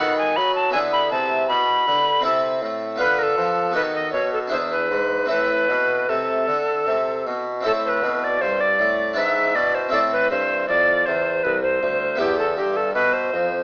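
Solemn and introspective, this short passage from a baroque-style sonata movement with continuo moves at an unhurried 79 BPM in 3/4, set in A minor. An alto recorder carries the melody up front throughout, its airy, wooden tone marked by vibrato and a tongued chiff that gives each phrase an expressive edge. Beneath it a harpsichord in the French style supplies a full, brilliant, plucked accompaniment from its three sets of strings, sitting mid-forward in the balance. A warm bassoon with light vibrato and a soft attack plays the bass line. The harmony circles through dominant chords back to A minor, and a second section begins around 7.6 seconds before the passage closes on E minor at 12.2 seconds. The sound carries a moderate recital-hall reverb yet comes through with the colour of an AM radio.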